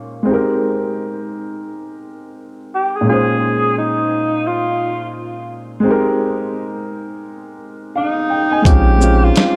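Melancholic and nostalgic, this lo-fi hip hop piece drifts on a swung sixteenth-note feel, cut from a longer work. A dark upright piano opens the recording as accompaniment, woody and vintage through a cassette-tape haze and low-pass filtering, alternating between Abmaj9 and Bbm11 chords while a filter sweep runs through the opening section. At 2.8 seconds a breathy tenor saxophone takes the solo melody in a narrow middle range, its subtone, vibrato and scooped notes giving it a whispered, intimate, jazz-style character, softened by a low-pass filter and trailed by delay. At 8.7 seconds a saturated sine sub bass arrives, deep and thick, alongside a gritty, compressed sampler-style drum kit with a thumpy kick, medium-tuned snare, hi-hat and shaker. A plate reverb soaks the mix in a dreamy wash, leaving the saxophone roomy and distant.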